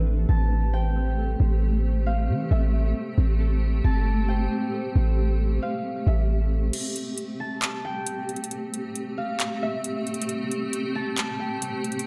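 Spacious and ethereal, this atmospheric cloud-rap excerpt moves at 135 BPM with a half-time feel in A minor, resting on an Am7 chord and tuned slightly flat to A4 = 436 Hz. A cloudy, blurred granular pad holds sustained chords throughout, sitting up front and carrying its own reverb, while a mellow, ringing concert harp plays a thumb-plucked melody high above it, trailed by tape echo. For the first 6.7 seconds, nostalgic, warbling lo-fi synth keys play arpeggios in the background, coloured by chorus, tape echo and a filter sweep, and a deep, boomy 808-style bass sits up front beneath them. At 6.7 seconds a break begins: the keys and bass drop out and an up-front electronic trap kit enters with crash cymbal, handclaps and metallic hi-hats, running until 12.1 seconds. The dreamy mix is soaked in a lush hall reverb that gives the excerpt a floating, hazy sense of space.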